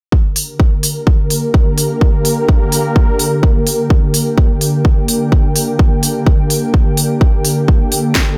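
Bass house with an aggressive, swaggering mood, built on a swung 4/4 groove over a single G minor chord in this short excerpt cut from a longer piece. A punchy, layered electronic kick sits up front with a touch of studio reverb, joined at 0.4 seconds by a house kit of cracking snare and crisp hats. A sweeping, resonant pad of detuned sawtooth with a noise layer and a filter swell holds sustained chords, its slow attack and long release given chorus and sidechain pumping. Beneath it, a warbly, lo-fi tape-like pad mixes sawtooth and triangle tones into a nostalgic, mellow haze, sitting in the background with chorus, its own reverb and the same pumping. The ambient pad fades in across the whole passage, while the overall mix stays dry and close.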